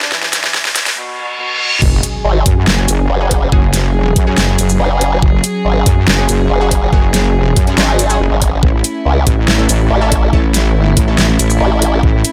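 Heavy wobble dubstep in F# minor at 141 BPM with a half-time feel, chaotic and aggressive, cut from a longer piece. A short build-up opens with a drum fill, a riser and reverse cymbal, and a brief nasal, vibrato-laden cello line with tape echo over dark, floating sul tasto strings that pump against the sidechain, before the drop lands at 1.8 s with an impact. From there two overdriven, up-front wobble basses, one a detuned sawtooth unison and the other a formant-swept pulse wave, churn under a knocking overdriven kick, a huge snare, hats, shaker and crashes, while bold, punchy orchestra-hit-like stabs with reverb and tape echo sit in the background as the chords move from F#sus2 to A at 8.6 s.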